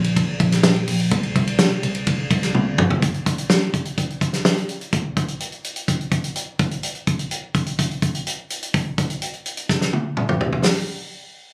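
A natural acoustic country drum kit with a punchy kick, medium-tuned snare and dark cymbals sits up front through this anthemic, piano-driven pop excerpt at 126 BPM in 4/4. A round, foam-muted vintage picked electric bass plays alongside it until 3.0 s, and drum fills land at 2.5 s and 9.7 s, with a moderate large-room reverb and the sound of a phone recording made in the room.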